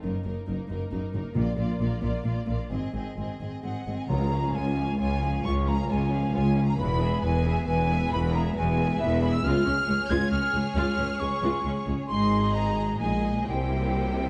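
The recording sits in a dark, moderately reverberant scoring-stage space that gives this cinematic cue a lush, enveloping body. Moving at 135 BPM in a straight 3/4, it feels soaring and adventurous, settling into Db major at 4.1 s. Distant bowed violins carry the melody high above, while a second violin section adds a smooth supporting line and violas fill the middle with even accompaniment. Beneath them, close cellos and a focused, up-front double bass section anchor the low end, every string section colored by vibrato. Articulate timpani struck with hard mallets mark brief moments from the background, and a pure, hollow concert flute enters at 3.6 s with a tongued second line.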